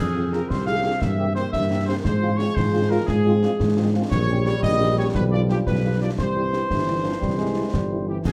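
A moderate large-studio reverb surrounds this stern, resolute military-style march for wind band in 6/8 at 116 BPM, where a clear trumpet section carries the melody over an up-front, dark tuba bass, close-miked trombone chords with light vibrato, a mellow French horn section in the background, concert snare, bass drum and dark clash cymbals, and a warm euphonium second line entering at 6.7 seconds, shortly after the harmony arrives on C.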